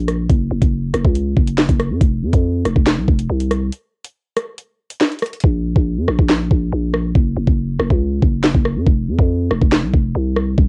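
A half-time drill groove in 4/4 drives this ominous, menacing hip hop excerpt. The drill drum kit supplies a knocking kick, sharp snare, metallic hi-hats, handclaps and rim clicks. This electronic, produced kit sits up front, coloured by vintage 12-bit sampler grit and cassette tape. Alongside it, a growling 808-style bass, also up front, carries the low end from Eb1 to Gb2, its buzzy, sine-based tone striking with a fast attack and decaying after each note. A break arrives at 3.7 seconds, and from 5.4 seconds the hi-hats fall silent for the rest of the passage. The dry, home-made cassette recording keeps both parts close.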